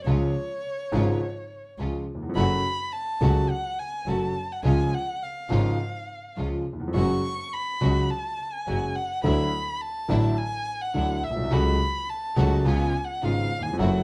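A dark, close violin carries a bowed solo line with vibrato, soft attacks and expressive portamento across this elegant, playful tango fragment, played with a rubato feel over chords moving from C# through F# minor to a closing C#7 at 12.7 seconds. Up front, a warm concert grand piano gives boxy, long-sustained accompaniment with deep bass, while a nasal, earthy bowed double bass with light vibrato anchors the low end. A bright, lush string section adds intense stabs in the background, all set in a moderate club reverb with a dark production.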